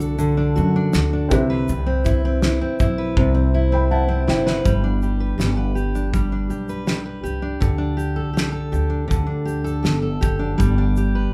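A fingerpicked, full-bodied dreadnought acoustic guitar, a woody, growly pizzicato upright bass, a cloth-damped thuddy drum kit with fat snare, tight kick and shaker, and a soft, boxy felt-muted upright piano set in the background open this sunny, easy-going acoustic pop excerpt in G major at 81 BPM, with a drum fill from 3.2 seconds leading into a new section just as the piano drops out at 4.8 seconds, while the band, playing live together in one room with light reverb, carries on to 11.3 seconds.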